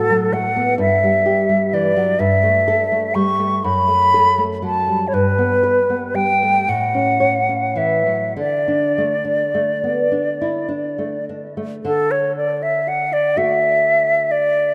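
Swaying in a slow, rubato 6/8 at roughly 33-43 dotted-quarter beats per minute, this romantic duo for flute and classical guitar unfolds in D major with a lyrical, warm mood. A bright silver concert flute carries the melody between A4 and C#6, its metallic, airy tone shaped by expressive vibrato, soft attacks and lifted highs, sitting up front and clearly above its partner. Beneath it, a dark, fingerpicked nylon-string guitar supplies the accompaniment from F#2 to C#5, also placed close, with audible finger squeaks adding an intimate touch. The harmony drifts through colours such as F#m/A, Em/G, F#madd11 and Gadd9 before settling on A and D5, and the opening material begins again at 11.8 s over a plain D chord. A moderate plate reverb with a 3.5 s tail gives the rough home demo mix a gentle glow, and the excerpt is cut from a longer piece, ending at 14.7 s.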